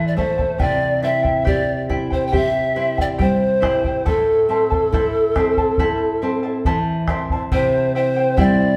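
Andean folk with a wistful, earthy mood, this cut from a longer piece sets an airy, woody, mellow pan flute with vibrato and a crisp chiff up front on the melody, over a fingerpicked charango whose doubled strings shimmer, a deep classical nylon-string guitar with audible finger squeaks, and a round bombo, the ensemble playing live together in a stone room whose reverb lingers.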